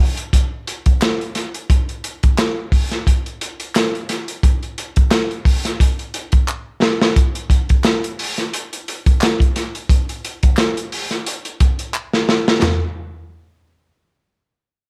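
A crunchy, saturated breakbeat drum kit sits up front with a tight kick, medium-tuned snare, hi-hat and toms under a rolled-off top, joined at 1.0 seconds by a hollow, close and dry group handclap in this gritty, energetic funk excerpt with a 16th-note swing, light reverb, and drum fills at 6.5 and 11.9 seconds.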